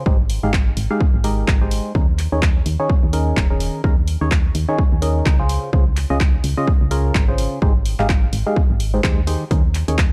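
A dark, warm production with little reverb frames this joyful, uplifting piano house excerpt, which moves in 4/4 with a swung sixteenth-note feel. A percussive organ stab opens at 0.0 s and carries the riff with a hollow, mellow tone built from sine and triangle waves, a noise layer and wave-folding, colored by chorus, phaser, cassette tape character, dub echo and sidechain pumping while sitting low in the mix. Beneath it, a solid FM bass gives a round, fast-attack low end with tube saturation and its own sidechain pumping. An electronic kick drum, layered, overdriven and re-recorded in a large room with studio reverb, sits up front as the loudest part, and a punchy analog drum machine joins at 0.3 s with overdriven handclaps and hi-hat placed quieter in the mix. The harmony cycles through Abmaj7, Eb7sus4 and Dbmaj7, giving the piece an uplifting pull.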